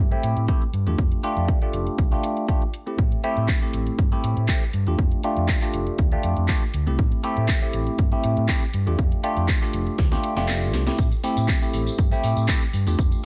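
A dry, close-sounding mix rides a filter sweep for its full length in this groovy, funky slice of filtered disco house, cut from a longer piece. A bright, bell-like tine electric piano sits up front with a phaser, carrying the accompaniment over chords that alternate between Am7 and F69, while an overdriven fingered electric bass adds a round, amped low end. Both share a low-pass filter and the sidechain pumping. A punchy, tape-warm electronic kick drives the groove alongside a house kit of cracking snare, handclaps and metallic hats, with the hats pumping to the sidechain. A drum fill arrives at 10.0 seconds and the kick briefly drops out at 10.5 seconds, before a filtered, pumping tambourine slips into the background at 11.0 seconds.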